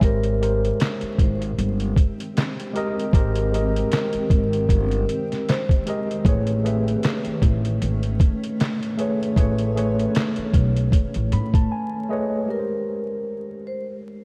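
A dreamy mix soaked in hall reverb and vinyl crackle frames this nostalgic, cosy lo-fi hip hop excerpt at 77 BPM in Ab major, swung on the sixteenths. Up front, a muffled, pitched-down sampler drum kit with thumpy kick, fat snare, hi-hat and handclaps sits beside a woody pizzicato upright bass on gut strings, while a worn, slightly out-of-tune tine electric piano, lightly overdriven with a cassette-tape tint, carries the chords from Abmaj9 to Amaj9 and plays a fill from 10.9 seconds. A ringing vibraphone with slow motor vibrato and diffuse delay carries the melody, and a cloudy, blurred granular pad with tremolo hovers in the background; the drums and bass stop at 11.7 seconds for a short break before the vibraphone returns at 12.5 seconds.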